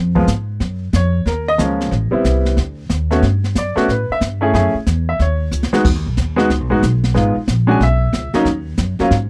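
A clear, up-front baby grand piano carries the melody in this swinging, playful jazz piano trio fragment at 183 BPM, over a woody, thumpy pizzicato upright bass with gut strings and an airy brush kit with dark cymbals, a high-tuned snare and a boomy kick that adds a short fill at 5.5 seconds, all captured in a dry, close 1970s-style studio sound.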